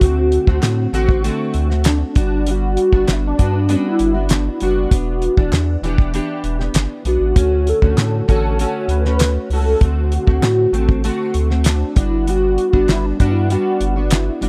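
A straight 4/4 groove at 98 BPM sits under this nostalgic, sunny stretch of indie and bedroom pop in D major, cut from a longer piece. A cloth-damped, thuddy drum kit drives it up front, with a fat snare, tight kick, hi-hat and a rolled-off top, while a round, deep analog bass with a dark, sustained tone sits close beside it. A fingerpicked, plugged-in jumbo steel-string acoustic guitar fills out the accompaniment with a full-bodied sound colored by analog chorus and a vibrato effect. Above it, a velvety, smooth synth lead carries the melody with a wave-folded edge, tremolo and ensemble chorus, and hollow group handclaps join in the background from 0.6 seconds. The harmony moves through D7, Gmaj7, Em7 and Dmaj7, all captured in a dry, close 1970s-style studio sound that feels intimate and warm.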